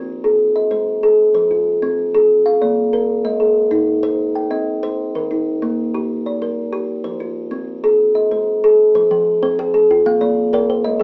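Through a thin AM-radio sound with light reverb, this hypnotic, rippling fragment of southern African traditional music in 12/8 sets an up-front, woody kalimba spinning ringing, hollow-box arpeggios from the start, joined at 9.1 s by a quieter, darker and smoother second kalimba weaving its own arpeggios lower in the mix until the cut at 11.0 s.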